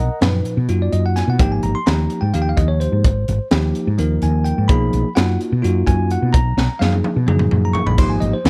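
In a straight 7/8, this slick, bright stretch of electric jazz fusion sets a clean, bell-like tine electric piano moving through Bmaj7 and Abmaj9 over a dark, round fretless bass with a woody, amped hollow-body tone, while a crisp, gritty drum kit with a high-tuned snare and tight kick joins at 0.2 seconds, pumping in a small room, and plays a drum fill from 6.6 to 8.0 seconds before the harmony lands on Absus2.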